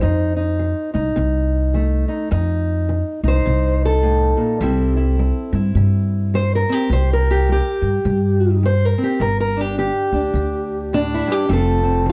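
Laid-back and swaggering, this short cut from a longer acoustic country blues piece swings easily in 4/4 as a dark, boxy fingerpicked parlour guitar carries the melody up front over a woody pizzicato upright bass on steel strings, both playing throughout the 12.1 seconds in a dry, close small-room sound with a 1970s studio character, moving from F7 through C7 and G5 back to F.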